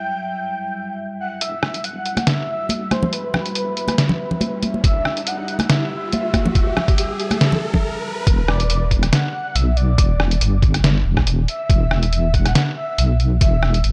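A half-time groove with a light shuffle on the sixteenths drives this brooding, cavernous deep dubstep cut, taken from a longer piece. It opens on a breathy, flute-like synth lead, softened by chorus, tape grit and dub echo, drifting over a deep, warbling vintage pad whose filter sweeps through the first moments. At 1.4 seconds a muffled, pitched-down trip hop kit of hi-hat, rim click and medium-tuned snare arrives up front with a dark, detuned wobble bass, and bright, dry hand-played congas join soon after. A thumpy, compressed electronic kick and an electronic riser feed the build-up, before the pad and congas fall away at 7.8 seconds for a brief stop. The drop lands at 8.3 seconds, leaving the kick, kit, deep wobble bass and the lead to carry the sparse, dry mix.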